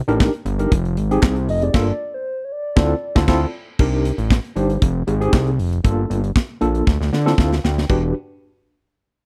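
Early-eighties boogie funk at 117 BPM in a straight 4/4, this slick, danceable excerpt is cut from a longer piece and rides a dry, close studio sound, with a fat, detuned sawtooth analog bass and a tight acoustic drum kit with handclaps and crash up front beside a worn, slightly out-of-tune tine electric piano with medium tremolo through a combo amp. From 1.5 to 3.5 seconds a soft, hollow, woody synth lead with chorus, vibrato and slapback echo sings a brief line over the Fm9, Gm9 and Dm9 changes while the band hits an accent. The drums and electric piano share a fill from 6.9 seconds before the harmony turns to Em7 at 7.9 seconds.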